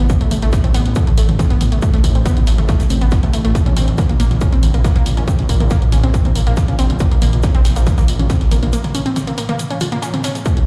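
Driving and intense, this fragment of peak-time techno runs at 139 BPM in 4/4 with a straight feel, sitting in A minor. A heavy, layered electronic kick sits up front, tape-warm and re-recorded in a small room, joined by a punchy analog drum machine on hi-hat and toms and, deep in the background, a compact cocktail drum kit whose dark, smooth hi-hat, shaker and high-tuned snare are rolled off at the top and filtered, with sidechain pumping on its hats and percussion. A thick, menacing detuned saw bass moving between G1 and Bb1 beats and pumps under the sidechain, saturated yet mellow, while a lush unison pluck riff between A3 and F4 warbles through vintage 12-bit sampler grit, pumping and digital delay. Alongside them a swarming, very quiet drone between A2 and E3 evolves with a moving notch and granular texture, tense and slow to bloom. The harmony shifts from an A5 chord to an open, chordless stretch at 3.5 seconds, and a break arrives at 8.7 seconds, all heard as if played through a big sound system in a bare room with a large studio reverb.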